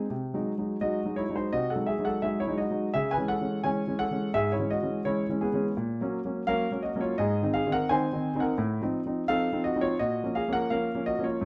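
Restless and serious, this brief fragment of a classical-period piano sonatina moves at 85 BPM in a straight 4/4, centred on C# minor with tuning slightly below standard pitch at A4 = 437 Hz. A solo concert grand carries the whole 11.4 seconds, spanning Gb2 to G#5 with deep bass, audible action noise and an intimate, up-front presence. Light reverb and a dark, warm production frame the harmony as it moves from G#7/B# through C# minor, Gb/Bb, Ab and F7 before arriving on Bb minor at 10.0 seconds.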